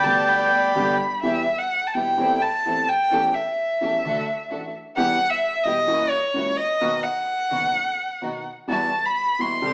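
A rich, bowed violin with vibrato and portamento plays an expressive solo from 1.2 s in this passionate, elegant tango excerpt in E minor, moving at 128 BPM with a rubato feel. A reedy, dark bandoneon carries the melody for the opening second, while a woody upright piano accompanies and a soft-attacked studio string section adds distant stabs in the background. The band plays live together in a stone room with wet reverb, and the recording has a small speaker sound.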